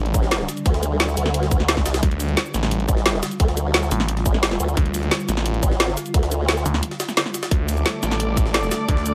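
A straight 4/4 pulse at 175 BPM drives this dark, technical drum and bass cut from a longer piece, tense and futuristic in D minor. A tight, up-front electronic kick anchors a layered drum and bass kit with a woody snare and bright hats and shaker, while a very quiet, gritty, pitched-up jungle sampler-style kit adds a high-tuned snare beneath. Two basses sit low and forward: a snarling, saturated saw bass growls with a moving notch and sidechain pumping throughout, and a formant-sweep wobble bass built on a detuned pulse wave with chorus plays until 6.6 seconds. Behind them a swarming, granular drone holds sustained chords with slow attack, built-in reverb and pumping, its tone mellow for all its unease. After a brief break from 6.8 to 7.5 seconds, a distant, veiled string section played con sordino with vibrato joins at 7.5 seconds, adding bowed ensemble shading over light digital ambience.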